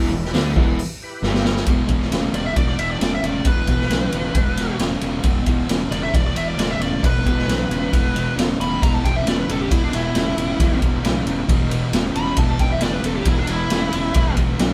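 Heavy and smoky, this blues rock and southern rock power trio cut holds on E minor at 135 BPM in a straight 4/4. A double-tracked, picked fuzz guitar riff and a dark, round, overdriven fingered bass run throughout, while a roomy, gritty garage drum kit with a punchy kick and rolled-off top sits up front, landing a fill from 1.2 to 1.7 seconds that opens a dark, distorted bluesy lead guitar solo. A very quiet, thick tonewheel organ with slow rotary speaker adds sustained chords at the start and again from 8.8 seconds, all captured as a band playing live in one small room.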